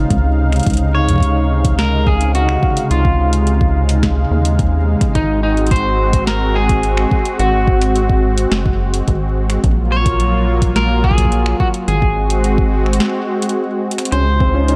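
Playful and glitchy, this IDM piece moves at a steady, straight pulse, cut from a longer work. A rubbery square-wave bass sits up front with a hollow, bouncy pluck, while a smooth, detuned analog pad warbles beside it with chorus, carrying chords that move from Dbmaj7 through Ab7 and Gbmaj7/Bb. An electric guitar at the edge of break-up plays the melody with a twangy, slightly broken-up tone, trailed by tape echo. A booming analog drum machine supplies dry finger snaps, metallic hats and a tonal snare, anchored by a deep electronic kick. A break arrives at 13.0 seconds with a drum fill at 13.8, and a soft, felt-muted upright piano slips in with mellow, intimate arpeggios at 14.1 seconds. The production is dark and warm, with light reverb and a digital ambience.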